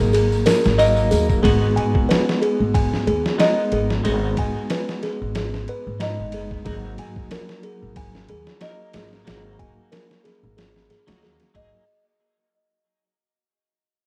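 A gritty, pitched-down sampler-style drum kit with a thumpy kick and medium-tuned snare swings at 92 BPM under this hypnotic, smoky trip hop excerpt, alongside a woody, gut-strung pizzicato upright bass up front, a bright, twangy clean electric guitar with harmonic tremolo and tape echo, a delicate, tinkling music box of filtered, delayed arpeggios, and a faint vintage tambourine in the background heard only from 0.1 to 1.4 s, all drifting between D#m/G# and G#m7 in a small-room home-demo mix that fades out across the whole clip.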